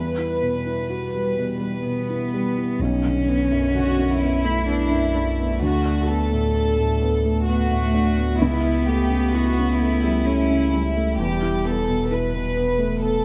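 Longing and melancholic, this neoclassical excerpt for piano and strings drifts at 64 BPM in a rubato 3/4 in B minor: a rich, floating violin section carries the melody up front, a single cello plays an airy-bowed, lightly vibrato second line, a felt-muted upright piano gives mellow, intimate accompaniment with audible action noise, and a deep, punchy sine sub bass enters at 2.8 s, set in light reverb.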